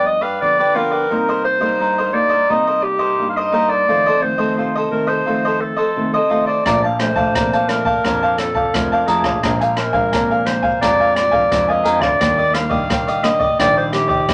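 Yearning and bittersweet, this short samba-choro passage moves at 86 BPM in a straight 4/4, with a soft-attacked, classical-style clarinet carrying the melody up front over a crisp, picked cavaquinho and a dark, fingerpicked nylon-string guitar, the harmony drifting from G7 through Cm7 and F7 toward Bbmaj7 and Ebmaj7. At 6.7 seconds a worn grand piano enters on the bass line, its action noise audible, alongside an open jazz kit of hi-hat, rim click and a boomy kick with a rolled-off top. The studio ambience is wet and short, giving the clarinet a distant, roomy glow against the mellow, up-front cavaquinho.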